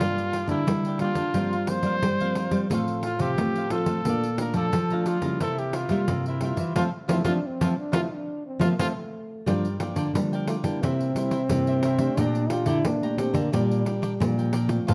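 A festive, playful samba-and-choro excerpt opens with a vibrato-rich jazz trumpet carrying the melody up front over crisp, mellow picked cavaquinho, a full-bodied fingerpicked nylon-string guitar, a thumb-plucked nylon-string bass line with audible finger squeak, and jingly, dry pandeiro played with hard hands, before a soft-attacked trombone enters at 7.1 seconds with a second line, joins a band accent, and takes a close-miked solo from 9.5 seconds, captured with detailed microphones in a large studio with moderate reverb.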